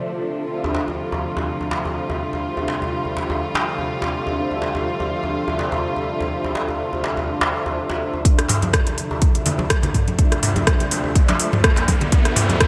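Bright 1980s-style digital production with a lush hall reverb frames this hypnotic, earthy afro house excerpt at 124 BPM in D minor, where dark, bowed chamber strings hold sustained Dm7 chords beneath mellow, detuned synth brass stabs with chorus, delay and a filter sweep, both pumping with sidechain, as a tight, cracking djembe enters at 0.6 seconds from a distant room, before a punchy electronic kick, an overdriven afro-pop kit with metallic hats, rim clicks and toms in gated reverb, ringing congas in the background and a barely audible woody FM bass enter between 8.2 and 8.5 seconds as the build-up begins, joined by a background riser at 10.0 seconds.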